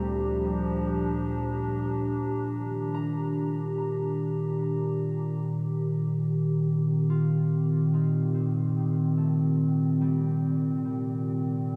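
A straight 4/4 pulse at 72 BPM moves unhurriedly beneath this melancholic, reflective ambient piece in C dorian, cut from a longer work and tuned to A4 = 439 Hz. Up front, a warbling, dark, lo-fi pad built from square and triangle tones holds slow-attack sustained chords with chorus and its own reverb, giving the sound a nostalgic tape character. In the background, a thumb-plucked acoustic concert harp rings out arpeggios through an analog delay. A glassy, ethereal glass harmonica adds an airy, beating texture and fades out by 5.4 seconds, where the music shifts into a new section. The chords move from Gm7/D to Ebmaj7 and then settle on Cm7, all bathed in a huge, dreamy reverb with an 8.6-second tail and a cassette-tape haze.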